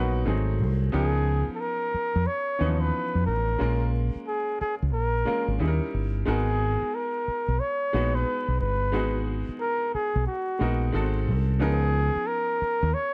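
A dry, close recording in a 1970s studio style, dusted with vinyl crackle, frames this smooth, sultry neo-soul and R&B passage cut from a longer piece, with a swung sixteenth-note feel in 4/4. A breathy, up-front flugelhorn carries the solo melody in a jazz style, with light vibrato, scooped notes and a slapback echo, while a bright, woody upright piano with short sustain plays the accompaniment. Beneath them, a deep, round, punchy fingered electric bass sits dark and amped, moving through rich chords such as G#7b9, C#13 and G#m9.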